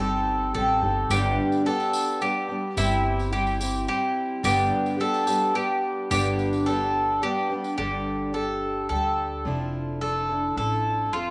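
Acoustic folk for a duo or small band, this short cut from a longer piece moves at 108 BPM in a straight 3/4, peaceful and nostalgic in G mixolydian with a tuning a touch below standard pitch. Up front, a fingerpicked twelve-string acoustic guitar carries the accompaniment with a shimmering, octave-doubled sound, and finger squeaks are audible on the strings. Beside it, a bright mandolin plays picked arpeggios on its double strings, while a pizzicato upright bass with steel strings adds a growly, thumpy low end. A jingly tambourine, heard in a live room, joins at 1.1 seconds and drops out by 7.7, just before the music shifts into a new section at 7.8 seconds. The harmony drifts from Cm/G through G and C/G, then settles on Gsus2 and Dmadd9/F, all bathed in a wet echo-chamber reverb that lends a spacious, lingering glow.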